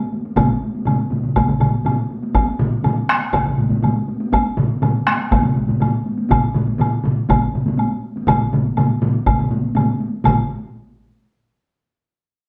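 Driving and powerful, this excerpt of Japanese traditional taiko ensemble music in straight 4/4 puts a distant, large-room taiko ensemble struck with heavy sticks up front beside hard-stick solo taiko drums, while a second solo taiko part sits in the background in a small room, and a close, dry taiko ensemble and a woody woodblock round out the live, one-room sound under a wet studio reverb, with the solo drums sounding until 10.7 seconds.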